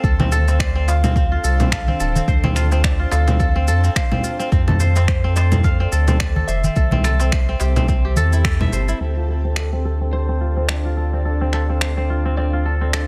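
Earthy and mystical, this organic downtempo piece moves at 107 BPM in 4/4 with a swung sixteenth-note feel, centred on D minor and cut from a longer work. A fingerpicked acoustic kora carries ringing, crisp arpeggios through a gritty 12-bit sampler texture, low-pass filter and digital delay. A round, sine-based sub bass sits up front with a sidechained pumping motion, while a blurred, detuned granular cloud pad drifts in the background with its own reverb and pumping motion. The beat pairs a deep, overdriven electronic kick, which drops out at 8.6 seconds, with layered electronic shaker, congas and finger snaps, all re-recorded in a small room. A crisp metal-shell darbuka played with hard hands sits in the background from 0.2 to 8.7 seconds, and a slightly broken-up electric slide guitar enters at 0.6 seconds with tape echo. The band lands an accent at 8.4 seconds before the music opens into a new section at 9.0 seconds, the chords cycling through Dm7, F and C6 inside a dense, heavily limited modern mix with digital ambience.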